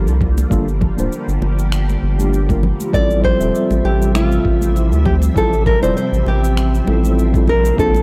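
A relaxed, blissful sunset chillout groove at 99 BPM in F major swings its 16ths, carried by an overdriven, thumpy electronic kick in the background, layered electronic cabasa and finger snaps, and close, dry congas. A round, deep analog bass with transformer saturation sits up front, while a mellow tine electric piano with vintage 12-bit sampler grit and a low-pass filter and a silky string machine with phaser and ensemble chorus hold chords moving from Gm7 to Fmaj9 and then Bbmaj7. At 2.9 seconds a bright, fingerpicked nylon-string guitar enters up front with the melody through an analog delay, and the whole passage, cut from a longer piece, has a dry, gritty hardware sound.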